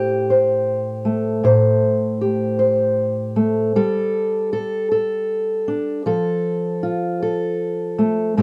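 Close and intimate in a small room's moderate reverb, this brief fragment of a longer acoustic folk piece features a lone fingerpicked steel-string acoustic guitar, up front with a dark, woody tone from old strings, moving reflectively through Am7, Gsus2 and F in a slow, straight 6/8 at 52 BPM.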